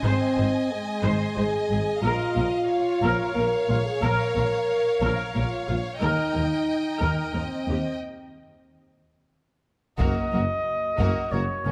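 In a steady, straight triple metre, this relentless, dark cinematic orchestral passage sets a lush, expressive violin melody over a rich second violin line, distant violas and a tight, close-miked French horn section holding sustained chords, all grounded by intense chamber double basses and woody cellos in the background, until at 10.0 s a roomy, up-front trumpet strikes stabs as a background tuba and heavy-stick taiko drums join, within a moderate concert hall reverb captured by close, detailed microphones.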